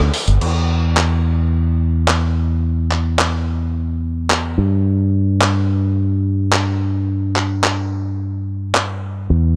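A fingered electric bass runs through an envelope filter, bright, punchy and up front, carrying a groovy, sleek nu-disco line in E minor at 108 BPM in a straight 4/4. Beside it a dusty soul sampler-style drum kit, compressed and gritty with a tape-warm grain, lays down crash cymbal, handclaps, hi-hat and rim click until 8.9 seconds, while the bass holds on to 9.6 seconds. A light reverb surrounds this short excerpt cut from a longer piece.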